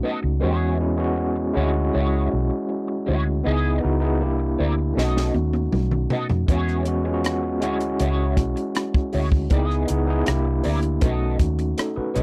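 A barky, gritty tine electric piano with medium tremolo provides the accompaniment in this bittersweet, silky slice of lush 1970s-style soul at 79 BPM, alongside a dark, slightly broken-up electric guitar riff through wah and a round, foam-muted fingered bass, while a compact cocktail drum kit with a punchy kick and high-tuned snare enters with a fill at 5.0 seconds, the whole captured in a dry, close studio sound that cycles through E6, Dmaj9#11, C#m9, C9 and B7.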